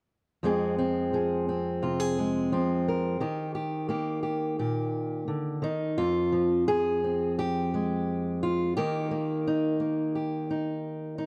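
A straight 4/4 pulse at 87 BPM carries this melancholic, reflective folk excerpt in F minor, where a lone fingerpicked steel-string acoustic guitar, woody and up front with the dark tone of old strings, moves between Fm and Eb from 0.4 to 11.3 seconds across a range of F2 to Bb4, set in light reverb within a dark production.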